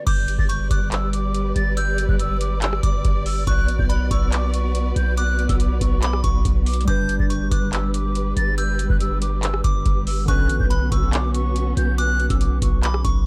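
Hip hop in a trap style, this dark and eerie excerpt moves at 141 BPM in 4/4 with a half-time feel, cycling between G and Bmadd9. A booming analog drum machine and a long sustained 808-style bass sit up front, the drums dry with a deep kick, metallic hats, handclaps, rim clicks and a crash cymbal, while the bass is a mellow sine tone with a fast attack that decays. Above them, a hollow, airy concert flute carries the melody high in its range with vibrato, a crisp attack and a delay, close-miked. A dark symphonic string section holds lush bowed chords with expressive vibrato and a smooth top, and a delicate synth tine bell adds a tinkling second line with chorus and delay. Warbly lo-fi synth keys with a nostalgic, vintage square and sawtooth tone and a filter sweep return at 6.8 seconds to fill out the accompaniment, all in a close, nearly reverb-free sound.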